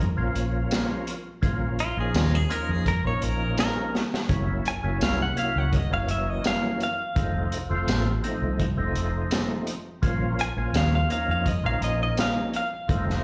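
A straight-eighth groove in 4/4 drives this brooding, soulful blues, cut from a longer live performance heard through a club's PA with a roomy reverb around it. A crunchy breakbeat kit arrives at 0.4 seconds with a punchy kick, a high-tuned snare, hi-hat and tambourine, its gritty, saturated sound rolled off on top, and a short drum fill lands at 3.9 seconds. Beneath it, a vintage fingered electric bass sits up front with a round, foam-muted, amped tone. A percussive tonewheel organ fills in the accompaniment, thick and lightly overdriven, with audible key click, third-harmonic percussion, chorus vibrato, a slow-turning rotary speaker and a slapback echo. Over the top, a clean, direct-recorded electric guitar carries the melody with a bright, twangy, scooped and compressed picked sound. The harmony moves from Bbm to Gb7 and F7 before settling back on Bbm.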